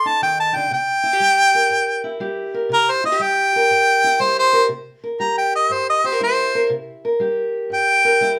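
A warm, up-front harmonica carries the melody as a jazz-inflected solo throughout this 8.4-second cut from a longer acoustic country blues, its vibrato and scooped notes giving the tune a gritty, rollicking edge. Beneath it, a dark, parlour-style fingerpicked steel-string acoustic guitar sits lower in the mix, moving from a rootless F7 to C7 in C mixolydian. The pair swing at 120 BPM in 4/4, with light reverb around them.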